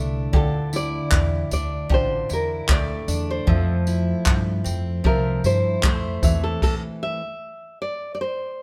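Tender and wistful, this acoustic pop fragment in D minor at 76 BPM sets a fingerpicked classical nylon-string guitar melody, with finger squeak on fresh strings, over a bright, full-bodied jumbo steel-string guitar, a slightly detuned upright piano with audible action noise in the background, a thumpy, woody gut-string upright bass played pizzicato, and a distant brushed drum kit with dark cymbals, punchy kick, handclaps and tambourine, the band playing live together in a stone room with moderate reverb through Dmadd9, Fmaj7 and Am/E before stopping at 6.6 seconds, leaving the nylon guitar alone from 7.2 to 8.6 seconds.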